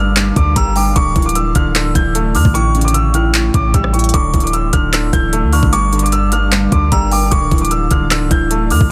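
Brooding and hard-hitting, this trap cut moves at 151 BPM with a half-time feel in D harmonic minor, cycling through Gm7, Dmadd9 and A7 as a dark concert grand piano carries the high melody with delay and a glassy, crystalline FM bell traces a second line in the background. A soft, felt-muted upright piano with audible action noise plays low accompaniment, while an ethereal, airy pad of detuned, wave-folded saws holds slow-attack chords behind with ensemble chorus and its own reverb. Up front, a deep, boomy 808-style bass with a fast attack anchors the low end, and a trap kit of knocking kick, crisp hi-hats, handclaps and rim clicks enters at 0.2 s, all sealed in a dense, heavily limited modern master with little room sound.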